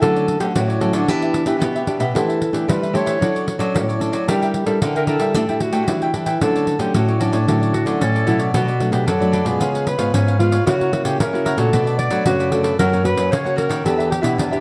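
A straight, jingly pandeiro played with soft hands drives this playful, joyful samba-choro, where a mellow, breathy alto saxophone sings the jazz-style melody with light vibrato, scooped notes and plate reverb. Crisp picked cavaquinho and a bright, fingerpicked nylon-string guitar placed up front play alongside it, while a second, warm classical nylon-string guitar carries the bass. A distant, bright clarinet slips in a brief line at 7.7 s just before the harmony shifts at 8.5 s, all within a dark production touched by light reverb, in a cut from a longer piece.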